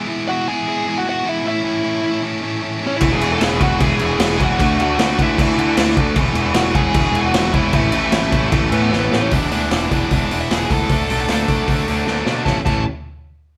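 A straight 4/4 pulse drives this rowdy, upbeat punk rock clip at 153 BPM in A major, cut from a longer piece. It opens with a sludgy, bright, overdriven guitar riff up front, joined almost at once by a smooth, warm overdriven lead guitar carrying the melody. At 3.0 seconds the band crashes in: a tight, distorted rhythm guitar riffing in the background, a growly fuzz-soaked picked bass, and a raw garage drum kit with a boomy kick, medium-tuned snare, hi-hat and crash, gritty and saturated with a rolled-off top. The chords cycle through E, A and D, and drum fills at 8.9 and 12.1 seconds push the music into each new section. Light reverb and the feel of a band playing live in one room give the whole thing a scrappy energy.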